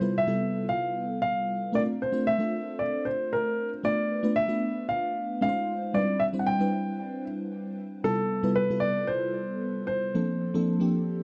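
Glossy and urban in mood, this short pop excerpt cut from a longer piece moves at 114 BPM in a straight 4/4, tuned slightly sharp to A4 = 441 Hz. A dark grand piano carries the melody between A4 and G5 for the full 11.2 seconds, its mellow, intimate tone sitting up front with audible action noise. Beneath it, an FM electric piano layered with a soft pad supplies the accompaniment from C3 to C5, sounding lush, dreamy and full-bodied with a detuned, decaying edge, shaped by tremolo and analog chorus. The harmony drifts through rich extended chords, opening on Fmaj9#11/C, touching Bm7b5 at 3.8 seconds and a brief Dbmaj9 before settling on Cmaj9, then returning to Fmaj9#11/C and Bbmaj9. The sound is dry and close, a 1970s-style studio recording with light reverb and small room ambience.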